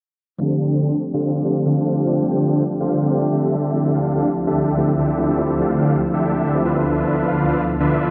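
Future bass at 144 BPM in 4/4 with a half-time feel, this dreamy, lush passage is cut from a longer piece. Up front, huge detuned supersaw chords carry the riff from 0.4 s, their full-bodied sawtooth unison shaped by a low-pass filter sweep across the whole passage. A clean tine electric piano plays accompaniment alongside them, its sound coming through built-in speakers and trailed by tape echo. At 1.8 s a shimmering ambient pad enters with sustained chords, ethereal and granular, with an octave-up shimmer, chorus and its own reverb softening its slow attack and long release. The harmony moves from G9sus4/D to Fmaj7/D and settles on Dm69, all set in a moderate hall reverb with a rolled-off top end.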